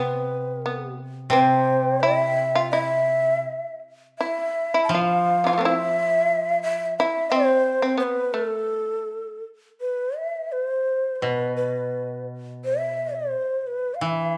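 Austere and still, this cut from a longer piece of Japanese traditional chamber music moves freely in rubato 2/4 at around 78-90 BPM, with a breathy, hollow bamboo shakuhachi carrying the melody up front with vibrato and a crisp, chiffy attack, while a buzzing, plectrum-plucked fretless shamisen adds a percussive second line until 9.4 seconds and a bright, woody koto played with fingerpicks accompanies low beneath them, dropping out at 7.0 seconds and returning at 11.2 seconds, all set in a moderate recital hall reverb.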